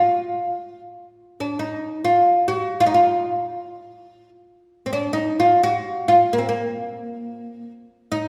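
A solo oud carries this brief, passionate excerpt of Turkish makam music, unfolding in free time in F makam hicaz with a tuning of A4 = 443 Hz. The fretless, plectrum-plucked instrument sounds woody and deep, its double strings ringing up front as it moves between Bb3 and Gb4 for the full 8.3 seconds. A wet recital-hall reverb with a 1.7-second decay surrounds the playing, giving it the spacious air of a church or concert hall.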